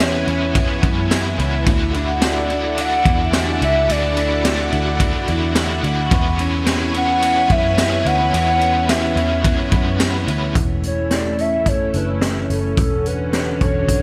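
In moderate studio ambience, this ethereal, dreamy dream pop excerpt sets a warbling, wave-folded synth lead with chorus, vibrato and delay over lush sawtooth string-machine chords, a dark, clean electric guitar playing arpeggios through lush chorus and delay in the background, a round, foam-muted picked bass, a gritty, boomy garage drum kit with a high-tuned snare, hi-hat, ride and tambourine, a double-tracked overdriven electric guitar with tremolo that stops at 10.6 s, and a ringing hard-mallet vibraphone with delay that plays until 6.4 s.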